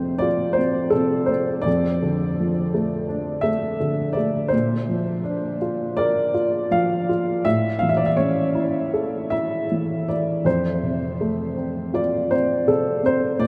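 A dark upright piano carries this short classical excerpt alone, its lyrical line moving with a free, rubato feel at around 82 BPM in 4/4. The mood is dark and reflective, and the piano's woody, mellow tone sits up front with an intimate, vintage character and audible action noise. Its short sustain is wrapped in a huge, wet ambient reverb with a 7.4 s decay, placing the instrument in a vast, echoing space. The playing spans F2 to F5, and the harmony moves from F through Dm/F and Bb to A before returning to F at 10.5 s. Tuned slightly low at A4 = 439 Hz, the piece is cut from a longer work and runs about 13.5 seconds.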